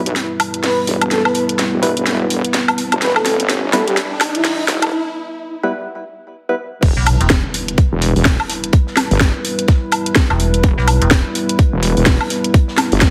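Bouncy and swaggering, this bass house cut from a longer piece moves at 126 BPM in E minor with a swung sixteenth-note feel and a heavily compressed, radio-like sound in a moderate digital room. From the start a moody, nasal analog pad holds sustained chords under a heavy, wobbling sawtooth bass with tube saturation and chorus, both pumping against the sidechain, while an overdriven garage drum kit with a cracking snare, hi-hat, crash and woodblock plays a fill during the first part of the build-up. A warm, very quiet soul drum kit with a rolled-off top sits far beneath it. A breathy, flute-like synth lead with vibrato and cassette-tape colour carries the melody from 0.6 to 4.7 seconds, and a hollow, organ-like stab with digital delay punctuates the passage as a background riser climbs through a filter sweep and a short break. At 6.8 seconds the drop lands with an impact and a tight, overdriven electronic kick up front, while a metallic FM bass cuts in with brief, decaying digital hits.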